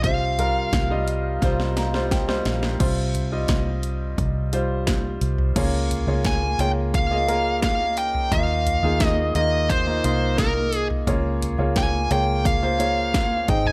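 Lightly reverberant and up-front, this bittersweet, dramatic excerpt of piano-driven pop moves at 87 BPM in a straight 4/4, with a clear concert grand piano of deep bass and long sustain carrying the accompaniment over a round, foam-muted vintage fingered electric bass. A layered, tape-tinged electronic house drum kit with a punchy kick and cracking snare drives the groove, and it joins the piano in a fill from 1.4 to 2.8 seconds. A dark, smooth, overdriven picked lead guitar sings the melody at the opening and returns at 6.3 seconds, over a harmony that moves from Csus4 through Db6 and Ebsus2.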